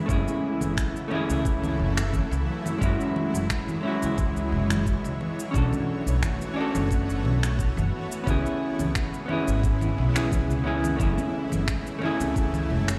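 Smooth and relaxed, this sunset chillout groove moves at 88 BPM in 4/4 with a light 16th-note swing, set in F# minor and cut from a longer piece. A dark, clean hollow-body jazz guitar sits up front with picked accompaniment, treated with delay and shimmer reverb, while an ethereal, detuned ambient pad holds sustained chords with a slow attack, chorus and an octave-up shimmer. Underneath, a woody, pizzicato upright bass anchors the low end alongside a knocking, tape-warm electronic kick, with produced electronic congas, shaker and finger snaps filling out the rhythm. At 11.2 seconds a very quiet, ringing acoustic conga part slips in close, lasting until 12.9 seconds. The harmony drifts from F#m7 through C#madd11/F#, Bm9 and C#m7 before returning to F#m7, all heard as if played over a big sound system in a bare stone room.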